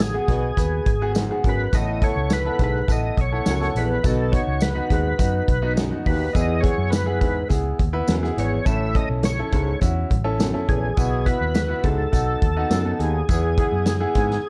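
Uptempo 1960s-style soul with an uplifting, warm glow, cut from a longer piece. A gritty, overdriven tonewheel organ carries the melody through a slow rotary speaker with chorus vibrato, key click and plate reverb, over a round, foam-muted picked electric bass, a punchy, natural country drum kit and a brilliant grand piano accompaniment bathed in plate reverb. A growling, raspy baritone saxophone plays a low riff from 0.3 seconds, a jingly tambourine adds shimmer, and very quiet, high-tuned congas join at 6.9 seconds, all in a dark production with light reverb.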